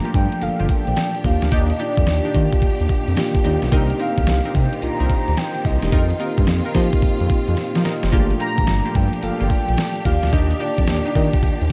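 Slick and confident, this 11.7-second excerpt from a longer R&B track rides a new jack swing groove at 109 BPM in 4/4 with a 65% sixteenth-note swing, moving through Gm7, Ebmaj7, Cm7 and F7sus4. An up-front, overdriven 8-bit drum machine with a thumpy kick, fat snare, hi-hat and tambourine drives the beat with a fill at 7.6 seconds, under a smooth sawtooth-and-sine synth bass, round, mellow electric-piano-like keys and punchy, detuned polysynth stabs sitting in the background with a filter sweep, chorus and analog delay. On top, a velvety, dark unison synth lead carries the melody with vibrato, chorus and delay, while a lush, distant bowed string section holds sustained chords with portamento, all wrapped in light digital reverb.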